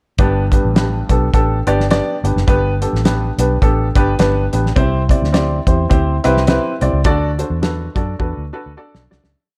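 A swung 105 BPM backbeat soul groove in 4/4 drives this short, uplifting 1960s-style soul piece in G major, with a cloth-damped drum kit giving a fat snare, tight kick and hi-hat with a rolled-off top. A foam-muted electric bass plays a round, syncopated line with chromatic approach notes, while a woody upright piano sits up front with close-voiced eighth-note chords moving from G to C to D. The dark, reverb-touched production fades out from 7.0 seconds as a drum fill closes the piece at 8.2 seconds.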